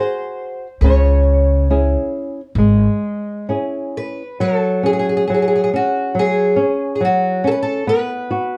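A dark, warm production with moderate studio reverb frames this mournful, passionate fado-style ballad excerpt at 69 BPM in a rubato 4/4, settling into F# minor at 4.4 s, as an up-front fingerpicked twelve-string acoustic guitar carries the melody with a shimmering, octave-doubled, old-string woodiness, a thumb-plucked flamenco guitar accompanies with a boxy tone and audible finger squeak, and a thumpy gut-strung upright bass plays pizzicato only from 0.8 to 2.8 s.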